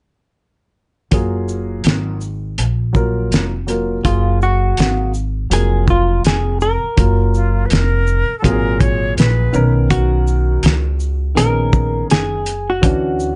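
Jazz-hop with a smooth, relaxed mood, this excerpt moves at 82 BPM in 4/4 with a swung sixteenth-note feel, centered in F# major. A cloth-damped drum kit sits up front with a fat snare, tight kick, hi-hat and shaker, its sound muffled, saturated and gritty, like a small room with a rolled-off top. A woody, thumpy upright bass played pizzicato on gut strings anchors the low end, while a dark, mellow grand piano adds intimate, vintage-sounding chords, its action noise audible beneath the harmony. At 4.1 seconds a clean, compressed hollow-body electric guitar enters with a fingered melody, and a reedy, airy metal flute with vibrato briefly adds a second line from 7.3 to 9.7 seconds. The chords drift from F#maj9 to Bmaj9 and Dmaj9, and the dry, close sound keeps little reverb and trims the highest frequencies.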